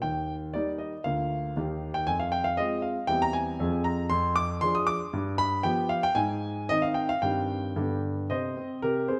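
In a rubato 2/4 at 116 BPM, this serious, dramatic cut from a classical-period piano sonatina features a solo concert grand with a warm tone, deep bass and up-front presence, moving from Eb major into C minor at 4.1 s and settling on a C minor chord at 8.3 s, all within the moderate reverb of a recital hall.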